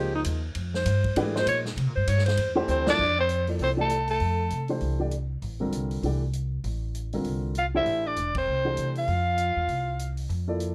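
A light reverb gives this short cut from a longer modal jazz piece in F major an open, searching air, with a swung 4/4 pulse at a brisk 197 BPM. A breathy alto saxophone with light vibrato and a smooth top opens as the soloist over a warm upright piano and an up-front, woody pizzicato upright bass on steel strings, with the chords shifting from Dbmaj9 to C13. A vintage drum kit, recorded naturally in a studio room with a tight kick, a medium-tuned snare and a rolled-off top, sits low in the mix and plays a fill at 2.7 seconds, where a growling soprano saxophone enters. The soprano takes the melody up front, raspy and gritty with scooped notes and vibrato, while the alto drops to a second line beneath it as the harmony settles on Fmaj9. The band hits an accent at 8.3 seconds before both horns fall away, leaving piano, bass and drums to close.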